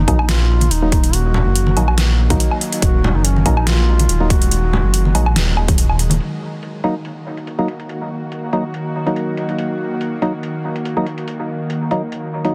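Deep dubstep in Eb minor at 142 BPM with a swung half-time feel, this meditative, cavernous passage opens with a mellow, vibrato-laden duduk melody, soaked in dub echo, that plays for the first 5.5 seconds over a rumbling, detuned sawtooth bass up front and a punchy overdriven electronic kick. Hollow, chorused organ stabs with dub echo and an overdriven dubstep kit of deep snare, metallic filtered hats and woodblock arrive almost at once. A tense, bright bowed-like drone with slow attack and built-in reverb enters at half a second and sustains chords to the end, and vintage, band-limited congas join in the background soon after. By 6.2 seconds the bass, kick and congas have dropped away, leaving the drone, stabs and kit in a dense, heavily limited mix with light reverb.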